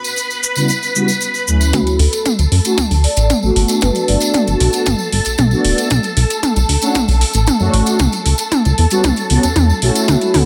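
A glossy, up-front chorused synth bass drives this sunny, groovy nu-disco excerpt at 115 BPM in D major, entering at 1.7 s after a filter sweep on an analog polysynth opens over lush, bright string machine chords with ensemble chorus and sidechain pumping, joined by dark, detuned synth brass accompaniment with chorus and phaser from 0.6 s, a ringing soft-mallet vibraphone melody with delay, a thumpy sampler-style electronic kick, a layered pop drum kit with metallic hats in small room ambience, and a distant tambourine, as the music builds under a drum fill through Dmaj7, Gmaj7 and Bm9 in light digital reverb.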